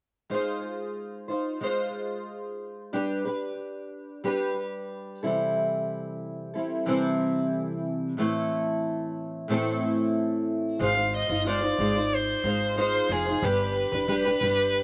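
A double-tracked, fingerpicked steel-string acoustic guitar opens this sunny, carefree acoustic pop piece, its up-front sound carrying a slapback echo as it moves through Ab6, G, C6 and Am chords. At 10.8 seconds a smooth, bowed violin with vibrato takes the melody, also touched by slapback echo, while a woody, thumpy pizzicato upright bass joins underneath. The recording has an open-air, outdoor feel with light reverb, and it is cut from a longer piece.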